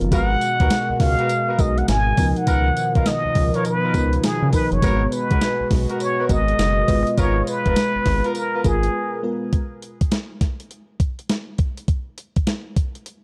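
Bouncy and punchy, this new jack swing passage from a longer piece rides a swung R&B groove in 4/4. Up front, a crisp 8-bit drum machine with a thumpy kick, medium-tuned snare, hi-hat and tambourine delivers a tape-tinged, sampler-style punch, joined by a round, deep analog bass blending sawtooth, sine and triangle tones. A trumpet with a plunger mute carries the solo melody, breathy and whispered with a wah-wah colour and vibrato, while a vintage horn section adds tight jazz-style stabs in the background. A lush, dreamy FM electric piano treated with chorus and phaser voices the chords over G#m9 and C#13, and a shimmering pulse-width pad sustains softly beneath it. After a brief break at 8.9 seconds, the drum machine plays on by itself until 13.2 seconds, and the mix sits in a dark digital ambience.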